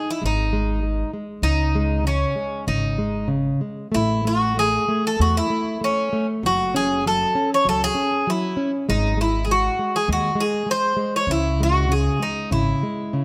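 Longing and passionate, this fado-style ballad in C# minor moves at a rubato 98 BPM in 4/4, taken from a longer piece. A Greek bouzouki carries the melody up front from the first moment, its picked double strings sounding bright and metallic, with some strings doubled at the octave. Beneath it a nylon-string guitar fingerpicks a dark, classical accompaniment, while an upright bass enters at 0.2 seconds with woody pizzicato notes and drops out at 12.7 seconds. The harmony opens on G#5 and C#sus2 before shifting at 3.9 seconds to a new passage built on A5, F#5 and G#5, finally settling on C# minor. Close, detailed microphones and light reverb keep the small ensemble intimate and clear.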